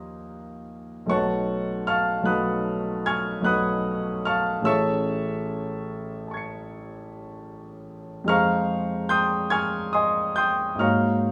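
A clear concert grand piano opens on an Ebadd9 chord, alone from the start of this brief passage cut from a longer classical piece in an impressionist style. The mood is serene and hazy, with the music moving slowly in a lilting triple-grouped metre and a free, rubato sense of time. Harmonies drift from Cb9 at 1.1 seconds to Amaj7 at 4.7 seconds and settle on Fm7 at 8.3 seconds, giving the passage a floating, colouristic quality. The piano spans a broad range, from a deep bass to high upper notes, and its natural tone carries a long sustain. Sitting up front in a small room with light reverb, the instrument sounds close and intimate, its resonance gently lingering around each chord.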